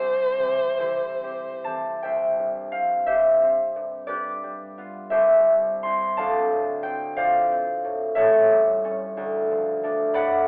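A concert harp carries this tender, lyrical romantic classical fragment from start to finish, its fingerpicked acoustic tone ringing up front across a span from A1 to C6. A single bowed violin sings the melody on C5 only for the opening 1.6 seconds, with warm vibrato, a soft attack and expressive portamento. In C major and 6/8, the music moves with rubato at around 46-62 BPM counted in dotted quarters, and the harmony travels from C through G7 and back to C, then on to Dm7, A7 and Dm. The duo sits in a recital hall with a wet reverb, but the sound has passed through worn, warbling old cassette tape, so pitch drifts and the tone narrows to a telephone-like quality. Cut from a longer piece, the clip shifts into a new section at 2.1 seconds, where the harp continues alone until 10.5 seconds.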